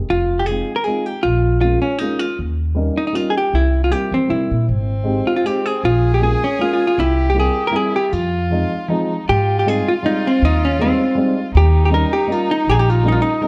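A woody, pizzicato upright bass opens this whirling, bittersweet musette waltz at 158 BPM in a swung, rubato 3/4, joined at once by an up-front, clean, picked hollow-body electric guitar carrying the melody and a dark, mellow upright piano in accompaniment, before a single bowed violin with focused vibrato adds a rich second line at 4.7 seconds, as the harmony moves from F minor to Ab major at 9.3 seconds in a moderate recital-hall reverb with a dark, warm production.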